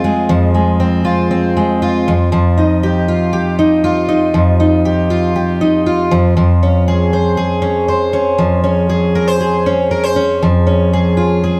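In a straight 4/4 pulse, this reflective, tender pop excerpt features a lone fingerpicked twelve-string acoustic guitar that carries the whole passage up front. Its jumbo body gives a full-bodied, shimmering, octave-doubled sound as the harmony moves from Fm through chords held over an F bass. A moderate studio ambience surrounds the guitar while it stays up front.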